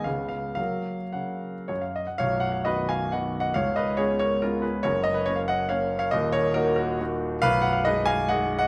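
Graceful and proud, this short classical excerpt is a romantic triple-time dance in 3/4, its dotted rhythms carried by a clear, intimate concert grand piano playing solo, with free rubato pacing. The piano sits up front with deep bass and audible action noise, its polished tone set in a moderate recital hall reverb. The harmony moves from C#7 to F# near the start, later passing through D#m and G#m/B before the fragment breaks off at 8.7 seconds.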